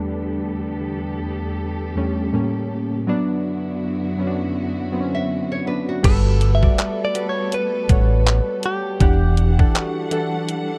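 Warbling analog keys anchor this moody, longing slice of contemporary R&B as accompaniment. Their detuned pulse and sawtooth tones are softened by chorus and a low-pass filter, and a filter sweep runs through the opening section. Beneath them, a lush bowed string section holds sustained chords with expressive vibrato and a smooth top, sitting softer in the mix. A woody nylon-string guitar slips in briefly at 5.1 seconds with fingerpicked arpeggios trailed by tape echo. At 6.0 seconds the groove arrives in a gently swung sixteenth-note feel: a round, dark fingered electric bass and a detuned 8-bit drum machine with a thumpy kick, handclaps, hi-hat and crash cymbal, both up front, while a clean, compressed electric guitar, recorded direct, carries the melody through tape echo. The harmony drifts through rich extended chords toward Gmaj9 and Em9, a short synth keys fill appears near the end, and the dry, dark production keeps the mood intimate.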